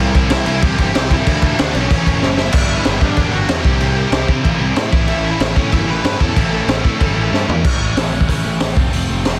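A biting overdriven guitar and a tight, very quiet distorted guitar open on picked riffs over a growly, fuzzed-out picked bass and an up-front garage drum kit with a punchy kick, high-tuned snare and gritty, saturated small-room sound, making for an energetic, upbeat punk rock cut from a longer piece. From 0.3 seconds a dark, smooth overdriven lead guitar carries the melody through a digital delay, sitting in the background, while drum fills at 2.2 and 7.3 seconds mark the turns between sections. The lead drops out at 7.4 seconds and the biting guitar at 7.6 seconds, leaving the quiet distorted guitar, bass and drums to close out the dense, dry, heavily limited mix.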